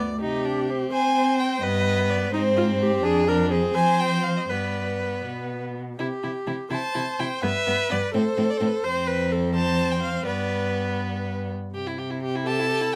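A smooth, even, vibrato-laden violin carries the melody from 0.9 s in this spirited, graceful excerpt of a quick classical-period string quartet movement in a flexible, rubato 6/8, over a focused second violin, a clear, close viola sitting up front, and a rich, expressive cello bass with soft attacks and portamento, all bowed by single players in light reverb.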